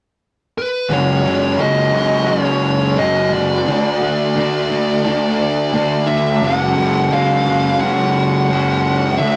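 A dark, fuzzed-out lead guitar carries the melody from 0.6 s in this hazy, blissful rock piece, joined at 0.9 s by a raw, overdriven garage guitar and a thick, distorted low fuzz guitar playing riffs up front over F#sus2 and Dadd9 chords, while a bright, morphing wavetable pad with phaser and ring-modulated, wave-folded tones drifts in softly behind from 1.3 s, all captured in a rough rehearsal-room recording with tube saturation and a short, wet ambience.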